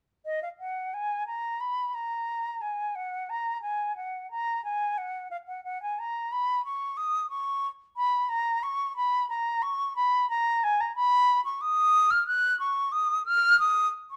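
Grave and flowing, this brief excerpt of a baroque-style classical fantasia is played by a single unaccompanied concert flute in a free, rubato 4/4, heard from 0.3 to 14.2 seconds. The flute's airy, tongued tone carries an expressive vibrato as it moves between Eb5 and F#6, sitting up front yet with a faintly distant quality. Light reverb and a dark, warm production frame the solo line.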